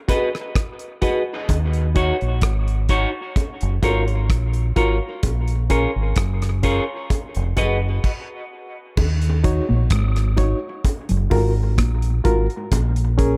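A barky, reedy electric piano stabs through this deep, spacious dub reggae excerpt, lightly overdriven with a fast tremolo and thrown into dub echo. Beneath it, a damped 70s drum kit sits dry and up front with a tight kick, crash cymbal, hi-hat and rim click, while tight, high-tuned bongos add echoed percussion in the background. After an opening break, a dark, round fingered bass enters at 1.5 seconds and holds the low end up front. A clean, picked electric guitar plays accompaniment through dub echo before a stop at 8.0 seconds, and at 9.0 seconds a mellow, compressed guitar takes up a low fingered riff in the background. The echo-heavy mix carries light studio reverb and a filter sweep across the opening section, with chords moving through Abm7, Ebm7 and Gbmaj7.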